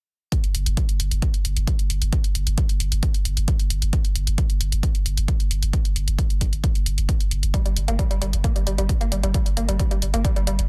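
A dry, dense and heavily limited mix frames this driving, industrial peak-time techno cut at 133 BPM in G minor, where a punchy, up-front analog kick and tape-warm hi-hats with sidechain pumping drive relentlessly over a thick, saturated sine sub bass on G1, until a woody, wave-folded pluck riff with chorus, overdrive, cassette-tape grit and tape echo enters at 7.5 seconds.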